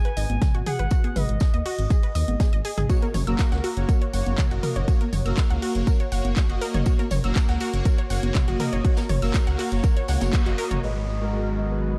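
Emotional and driving, this progressive house excerpt at 121 BPM rides a punchy, overdriven electronic kick and a deep, rumbling detuned saw bass that pumps with the beat, joined by a house drum kit of handclaps and bright hats, background electronic congas and toms, and a brushed jazz kit with a high-tuned snare. A lush, decaying unison pluck spins arpeggios through digital delay while a smooth, expressive portamento lead with vibrato and chorus sings over the opening, and a mellow, full-bodied supersaw adds stabs from 2.9 seconds. At 10.8 seconds the drums and pluck fall away, the lead returns over a thick, warbling unison pad on a G#m7 chord while the supersaw and pad are swept by a filter and a downlifter plays, all in a close, dark production with little reverb.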